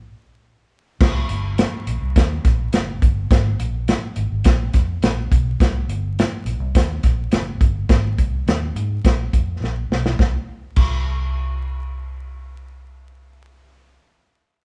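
This passionate, urgent slice of uptempo 1960s-style soul opens on a brief break with vinyl crackle before the band comes in at 1.0 seconds, moving at 104 BPM in a straight 4/4 in C minor. The drum kit, playing crash cymbal, hi-hat, kick and snare, sits up front yet sounds roomy and distant, with dark cymbals, a medium-tuned snare, a tight kick and a rolled-off top roughened by vintage 12-bit sampler grit. Beneath it, a foam-muted fingered electric bass carries the low end with a round, dark, amped tone, quieter than the drums. A drum fill arrives at 9.6 seconds, and the kit drops out at 10.9 seconds, leaving the bass to carry on alone. Light reverb and the feel of a band playing live in one room give the cut a vintage character.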